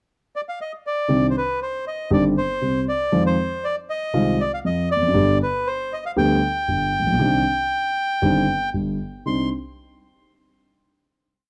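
Sultry and melancholic, this short, complete tango unfolds with a rubato feel. A reedy, airy bandoneon opens the pickup at 0.4 seconds with a motif-based melody built in period phrases, and at 1.1 seconds a mellow, deep-bassed concert grand piano with short sustain joins beneath it, marking the tango rhythm marcato in two. Both instruments sit up front in a dry, close, 1970s-style studio sound with small-room ambience, and they stop together at 9.5 seconds on the final minor chord.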